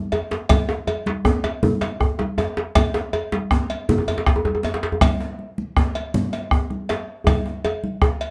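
A round, up-front bombo anchors this short, earthy and powerful cut from a West African drum ensemble, rolling in 12/8 at 106 BPM with a straight feel. Around it, a tight, cracking djembe sits close and saturated, a second djembe sounds deep and distant with buzzing metal rattles, ringing medium-tuned congas are struck with hard hands, and a metallic cowbell joins in. Drum fills open the passage and return from 7.3 seconds, all captured with close, detailed microphones in a moderate small-room ambience.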